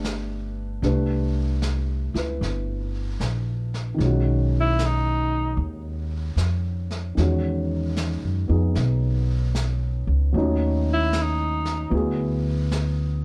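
A dark, warm production with light reverb gives this late-night swing jazz fragment a romantic, intimate glow. A baby grand piano with a dark, mellow tone and audible action noise supplies the accompaniment throughout, while a woody, thumpy upright bass sits up front, plucked on steel strings. A vintage brush kit played in a small room, with brushed snare and hi-hat and a rolled-off top, keeps a soft swinging pulse underneath. A breathy alto saxophone with subtone, vibrato and plate reverb carries the melody in two brief up-front phrases, first at 4.6 seconds and again at 10.9 seconds. Rich harmony drifts through chords like Cmaj7, E69 and D#m7b5, lending the passage a tender, smoky warmth.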